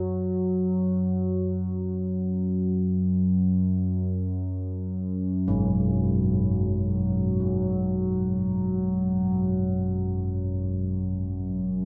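An up-front analog synthesizer drone fills this desolate dark ambient piece, a vintage, warbling tone that evolves from the first second through the end at 11.9 seconds, sitting between F#2 and F#3. Its slow attack and long release keep it sustained, and a chorus effect thickens the sound. At 5.5 seconds carillon bells enter with arpeggios on G#2, their bronze ringing set back in the mix and trailed by delay. The whole passage floats in free time, tuned to A4 = 441 Hz, and bathed in a soaking cathedral reverb that makes it feel like a vast, echoing space. Cut from a longer piece, it holds a single bleak mood from start to finish.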